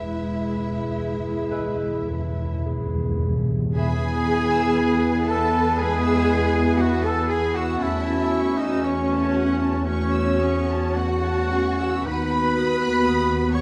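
In a rubato 4/4 at around 50-62 BPM, this slow, lyrical and tender romantic movement for symphony orchestra in E major is cut from a longer piece, with a violin section carrying the expressive melody with vibrato and portamento, while a lush second violin section, a clear oboe, a soft-attack clarinet and a pure-toned small flute group add secondary lines in the background. Violas supply focused accompaniment, a mellow French horn section holds sustained chords, a distant trumpet section adds stabs, rich cellos and even double basses carry the bass, round soft-mallet timpani play a fill across the first 3.8 seconds, and a bassoon appears briefly at 1.5 seconds. The dark, warm production sits in a recital-hall reverb, and the harmony moves from E to F#m7/E at 7.8 seconds before arriving on B/D#.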